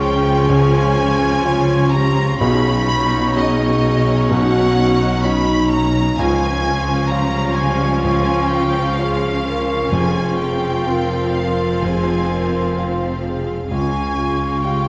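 A rubato 4/4 pulse at 64 BPM carries this uplifting, tender cinematic film score fragment, in which a close, smooth violin section with vibrato sings the melody alongside an airy, straight-toned flute, a distant second violin line, a roomy clarinet, expressive violas with portamento, a polished grand piano, a mellow close-miked French horn section holding chords, lush cellos and bowed double basses, the harmony moving through Db, Cbadd9 and Fm in a moderate scoring-stage reverb.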